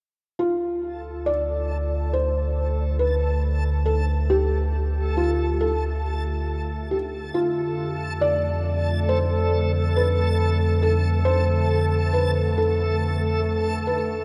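A round, mellow sub bass sits up front from 0.4 seconds, holding a deep, sustained sine tone between D2 and F2 beneath this reflective, melancholic ambient passage, taken from a longer piece, at 69 BPM in a straight 4/4 in D dorian, tuned to A4 = 438 Hz. Above it, a felt-muted upright piano carries the melody from F4 to D5, its thick felt giving a soft, dark, intimate tone with short sustain, trailed by a diffuse ambient delay. From 1.0 seconds a reversed, swelling texture adds a bright, dreamy, granular shimmer between A4 and A5, detuned and triangle-based with a soft attack, long release and its own reverb. An organ-like drone enters at 3.6 seconds and fades in gradually in the background, a calm, detuned unison of slow-attacking sine tones from D3 to A3, thickened by ensemble chorus and built-in reverb. The harmony moves from D5 to F at 7.4 seconds, and the whole passage sits in a vast, echoing space with a huge, wet reverb tail of 7.6 seconds.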